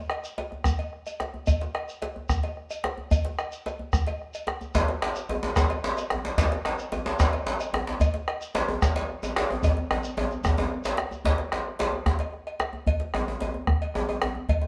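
West African traditional drum ensemble music in a driving, earthy 12/8 groove, cut from a longer piece. A round, up-front bombo, a metallic cowbell, a grainy, mellow shekere and a deep djembe fill a stone room with moderate reverb, joined at 4.7 s by a second, warm djembe with metal rattles and hard hands. A drum fill leads from 9.6 s into a new section, where the shekere drops out at 11.2 s.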